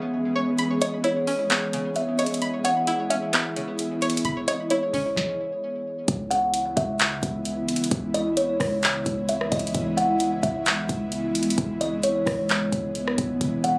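Up front, a booming analog drum machine drives this hazy, melancholic cloud-rap excerpt at 131 BPM in a half-time 4/4 feel, its deep kick, tonal snare, handclaps, rim click and metallic hats entering at 0.6 seconds, with a short room on the snare, clap and hats. Over it, a woody, hollow kalimba carries a soft, ringing melody through a low-pass filter and delay, while an ethereal, airy pad holds sustained C# minor chords with ensemble chorus, built-in reverb and sidechain pumping. A bright, twangy string-like resonator pluck spins arpeggios with chorus, a filter sweep and delay until 6.1 seconds, after a brief stop in the music from 5.2 seconds. At that point a deep, boomy 808-style bass arrives beneath the mix, decaying after each fast attack. The whole piece sounds as if captured on a phone in the room, with moderate booth ambience, club reverb and compression.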